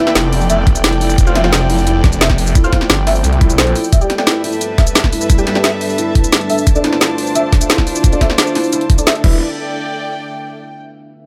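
This excerpt of dark, technical drum and bass at 175 BPM opens with a deep, moody ambient pad holding sustained chords, softened by chorus and its own reverb, alongside a felt-muted upright piano playing mellow arpeggios through a low-pass filter and delay, and a chamber string section bowing a soft, sul tasto texture with light vibrato. Almost at once an orchestra-hit-like synth stab cuts in with bold, punchy hits, sitting back in the mix under phaser, delay and a filter sweep. The overdriven drum kit brings a woody snare, bright hats, shaker and crash, while a knocking electronic kick arrives at 0.7 seconds, both placed up front in a dry, close sound. A snarling, growling saw bass with heavy distortion enters at 0.2 seconds and drops out at 3.7 seconds, returning briefly near the end, and the pad, piano and bass all pump against the kick. The harmony moves through Em, F, Gadd9 and Dm before landing on A7sus4, where the strings carry on alone to 10.7 seconds, keeping the mood tense and mechanical.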